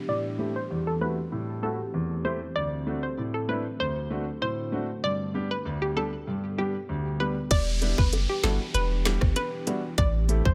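Dancehall in E minor at 97 BPM, tough and sultry, this excerpt opens with a dark, moody sawtooth pad, pumping softly in the background under a filter sweep, while a polished baby grand piano and a hollow, bouncy square-wave pluck with tape echo carry the chords and melody through Am7, D7 and G. A downlifter sweeps in at the start and returns near 7.6 seconds. At 7.5 seconds the tight, electronic island pop kit arrives with a woody snare, finger snaps, rim clicks and a crash, joined by a deep, punchy sine sub bass with a pitch-drop attack, and very quiet, high-tuned bongos follow at 7.8 seconds, all under light reverb.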